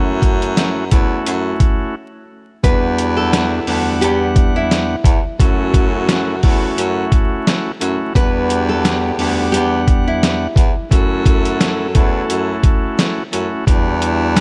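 A reedy, clean tonewheel organ and a soft-attack, subtoned baritone saxophone carrying the bass open this reflective yet tough, swung boom-bap hip-hop excerpt, with a gritty, pitched-down sampler drum kit up front, its thumpy kick and medium-tuned snare punching through vinyl crackle and a small room ambience. After a short break at 1.9 seconds, a full-bodied, fingerpicked nylon-string guitar takes the melody through analog delay from 2.6 to 10.9 seconds, while a very quiet, tight saxophone section adds smooth jazz stabs. Underneath, the chords sway between F#m7 and Em9 as the distant baritone keeps its roomy jazz voice.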